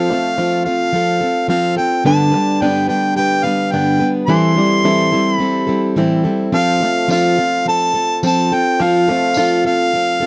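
A straight 4/4 pulse at 107 BPM carries this reflective, haunting acoustic folk passage, cut from a longer piece, as its chords move through F, G, Am7 and back to F. Up front, a clear harmonica sings the solo melody in a classical style over a bright, picked plugged-in steel-string acoustic guitar, while a twangy, plunky open-back banjo fingerpicks arpeggios in the background. A jingly tambourine joins at a distance from 7.1 to 9.5 seconds, and the whole sound is dry and close, like a 1970s studio recording.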